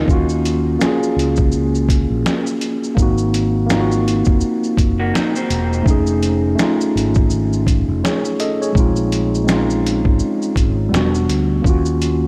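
A swung sixteenth-note groove in 4/4 from a compressed, muffled sampler-style trip hop kit, with a thumpy kick, medium-tuned snare, hi-hat and shaker, drives this reflective, nostalgic lo-fi hip hop excerpt, the drums overdriven and sitting up front. A mellow tine electric piano, clean and heard through its built-in speakers with a cassette-tape haze, carries the chords from Ebm9 through Ab9, F7alt and Bb9sus4 over a dark, round, punchy fretless bass. A slightly broken-up, picked electric guitar through a small old amp adds a faint second line with analog delay, touching in at the very start and surfacing again briefly from 5.0 to 5.8 seconds, all within a dreamy mix soaked in cathedral reverb.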